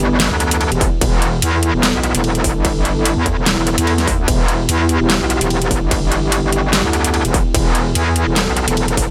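A digital ambience surrounds this short, aggressive cut of heavy wobble dubstep, which sits at 147 BPM in 4/4 with a half-time feel, a 55% swing on the 16ths and a single E minor chord throughout. From the opening, a metallic, FM-built wobble bass dominates the low end between E1 and E2, bright, compressed and up front, its sustained tone roughened by distortion and overdrive and thickened with chorus. Beneath and around it, a lush supersaw pad holds sustained chords from E3 to A4, its detuned unison sawtooths and sub octave shaped by a slow attack, a low-pass filter and sidechain pumping that keeps it mellow and full-bodied behind the bass. The dubstep drum kit arrives at 0.2 seconds, placing a huge snare, metallic hi-hats and ride cymbal up front with a tape-warm character. At 0.8 seconds a layered, distorted electronic kick joins, adding crunch and weight to the heavy groove through the end of the fragment at 9.1 seconds.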